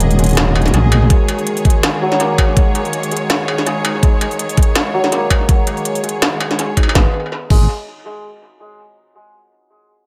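Half-time drum and bass with a cinematic, spacious mood, this excerpt is bathed in light reverb and digital ambience, giving it an echo-heavy sheen. A lush studio string section holds bowed sustained chords with rich vibrato, its sidechain pumping breathing under the beat, while a mellow hammered santur rings out shimmering arpeggios through a low-pass filter and analog delay, a filter sweep shaping it until 7.0 seconds. An industrial drum kit sits up front with a clanging snare, crisp hats, crashes and struck metal, tape-warm and re-recorded in a large room with tape echo trailing behind. A deep, dark wobble bass with chorus sounds only briefly at the start, then an electronic kick drum enters at 1.1 seconds with a knocking, upfront punch. The strings drop out at 7.1 seconds as the wobble bass returns over a shift to G#m, closing on santur, drums and bass.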